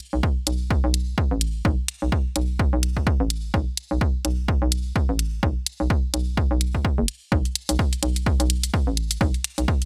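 Cool and hypnotic, this short cut from a longer minimal techno track runs at 127 BPM in 4/4, with a 57% swing on the sixteenths giving it a subtle shuffle. An electronic hi-hat starts things off, layered and tape-warm, sitting up front in the mix. A hollow, knocking FM bass joins almost immediately, moving between F#1 and B1 with a bouncy, fast-attack sound that decays, thickened by tube saturation and pumped by sidechain compression. A punchy analog kick drum arrives at 0.2 seconds and anchors the groove, just as forward in the mix as the bass and hats. The whole piece stays in a single section, set in a digital ambience with a bright, 1980s-style digital production sheen.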